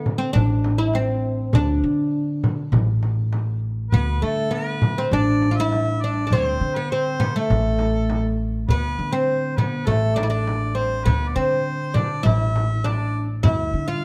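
A fretless oud plucked with a plectrum opens this longing, soulful Turkish makam piece up front, its double strings deep and woody, over a growly pizzicato upright bass and a small, bright frame drum played with soft hands. At 3.9 seconds a harmonica adds a quieter second line in a classical style, sounding distant and roomy with light vibrato. Near the close, at 13.4 seconds, a large clay-shell darbuka slips in very quietly as this cut from a longer piece ends, all set in light reverb with close, detailed miking.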